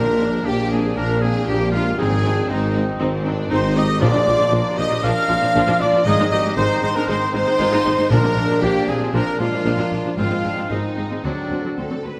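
Heroic and soaring, this cinematic adventure-film cue moves at 117 BPM in a straight 4/4, set in Bb mixolydian and swinging between Bb and Ab chords before landing on a D7 at 11.2 seconds. A lush violin section carries the melody with smooth, even vibrato, while a second, distant and very quiet violin section, an airy silver flute, a clear solo oboe and a background clarinet spin supporting lines around it. An expressive viola section with portamento fills the inner accompaniment, and tight French horns and bright trombones hold sustained chords behind the strings. Beneath, woody double basses, a very quiet cello section and a mellow tuba anchor the bass, as a ringing fingerpicked harp adds soft arpeggios. Timpani strike on Bb at 0.0, 4.0 and 8.1 seconds, and a generous scoring-stage reverb gives this fragment of a longer piece a grand, spacious sound.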